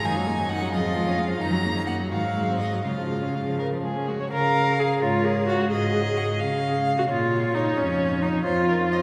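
A quick, stormy classical-period movement for string quartet in a rubato 6/8, where a focused, vibrato-laden first violin carries the urgent melody above a smooth, even second violin, while an up-front viola with a rich, smooth top fills the accompaniment and an intimate, airy-bowed cello anchors the bass, all heard from further back in a wet cathedral reverb in this fragment cut from a longer piece.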